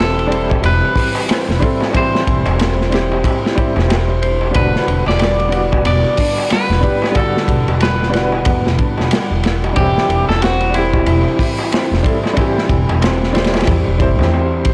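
A dry, gritty cassette recording in a small room carries this melancholic, brooding trip hop excerpt at 92 BPM, its sixteenths swung over chords moving from C/E to Em7 and back. Up front sit a growly, woody pizzicato upright bass with tube saturation and a crunchy, saturated breakbeat kit with dark cymbals and a tight kick. A natural-sounding upright piano with tremolo and long sustain accompanies, a mellow, ringing Celtic harp arpeggiates in the background with 12-bit sampler texture and tape echo, a twangy, slightly broken-up electric guitar carries the melody through the same sampler texture and echo, and a crisp, deep metal-shell darbuka sounds very quiet and distant in a large room.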